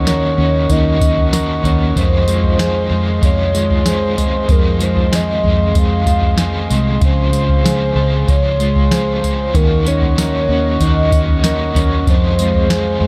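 A soft vintage rhythm box sets a straight 4/4 pulse at 95 BPM, its deep kick and crisp snare joined by tambourine and toms from 0.1 s to 12.8 s in this floating, ethereal dream pop fragment cut from a longer piece. A foam-muted, round and punchy fingered bass anchors the low end, while a mellow electric guitar spins clean arpeggios through subtle chorus and digital delay. A crunchy overdriven guitar, picked and treated with tremolo and analog chorus, adds grit to the accompaniment, and a glass harmonica holds pure, slow-blooming chords up high. Meanwhile, a hollow, woody synth lead with a clarinet-like tone and gentle vibrato carries the melody, softened by chorus and digital delay. The harmony drifts through Ebm7, Fm7 and Dbmaj7 before circling back, and the dry, dark production keeps the whole thing intimate and close.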